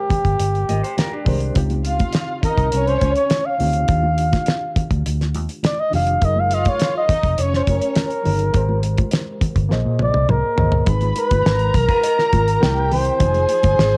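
A mellow flugelhorn opens this smooth 1970s-style soul piece, carrying the melody as an up-front, jazz-style solo with vibrato and scooped notes. Beneath it, a reedy, worn electric piano sits in the background, slightly out of tune, lightly overdriven and shimmering with fast tremolo through its built-in speakers. Almost at once, a dark, foam-muted fingered electric bass with a round, punchy tone joins up front, along with a dry acoustic drum kit with a fat snare and tight kick, and ringing, medium-tuned congas placed close but low in the mix. A lo-fi electric guitar through a small old amp, picked and slightly broken-up, adds a brief riff near the start and returns once near the end, while from 1.9 seconds a bowed studio string section with a dark, woody, lush ensemble sound adds a second line. The harmony moves through rich ninth chords, and a drum fill at 9.7 seconds closes the flugelhorn solo before the music turns toward minor chords, with much of it wrapped in cassette tape character and small room reverb that give it a homemade feel.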